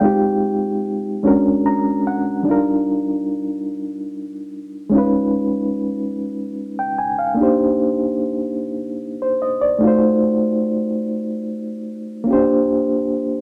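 A wet studio reverb with a short tail surrounds a solo reed electric piano, placed up front and heard through its built-in speakers, its reedy, clean tone shimmering with fast tremolo. This sultry, late-night R&B passage in 6/8, tuned slightly below standard pitch, is cut from a longer piece and moves through lush extended chords such as Fm9, Ebmaj9 and Cm9. The piano plays a brief fill from 1.3 to 2.5 seconds before settling on Bb69 at 12.3 seconds.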